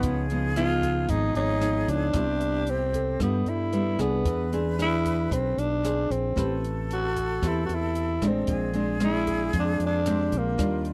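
A dry, close 1970s-style studio sound frames this breezy, relaxed bossa nova, cut from a longer piece. An up-front, growling tenor saxophone carries the melody with raspy subtone, vibrato and scooped notes, over a breathy metal jazz flute second line and fingerpicked nylon-string guitar with fresh strings and finger squeak. Beneath them sit a dark, round fingered electric bass and a compact cocktail drum kit of hi-hat, kick and rim click from a tight booth. A worn, slightly out-of-tune tine electric piano, lightly overdriven through a combo amp in the background, drops out at 4.3 seconds and returns at 9.3 seconds.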